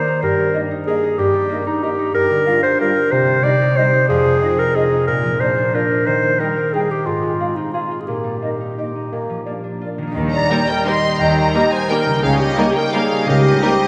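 An elegant, festive classical passage in Eb major opens with an up-front clarinet over mellow French horn chords and ringing harp arpeggios, moving in a rubato 3/4 at roughly 162-204 BPM, with a background bassoon and an airy flute section soon joining. At 10.2 seconds the strings arrive: cello and double bass sections take the bass line while a violin section carries a smooth melody with light vibrato, above a focused viola section and a very quiet, expressive chamber violin section. A wet church reverb gives the music a spacious glow, and the passage is cut from a longer piece.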